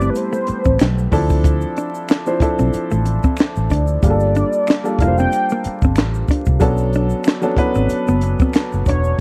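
R&B and neo-soul with a late-night, soulful mood and a lightly swung feel, this short excerpt from a longer piece sets a velvety, detuned synth lead carrying the melody with chorus over a dark, clean hollow-body jazz guitar second line and a worn baby grand piano with long sustain. Underneath, a round, foam-muted fingered electric bass sits up front beside a compact cocktail drum kit that enters at 0.2 s with a punchy kick, high-tuned snare, hi-hat and handclaps, while a soft egg shaker and finger snaps add a faint, close layer. The chords move through Am9, Dm9, Gm9 and Bm9 in a dry, close 1970s-style studio sound dusted with vinyl crackle.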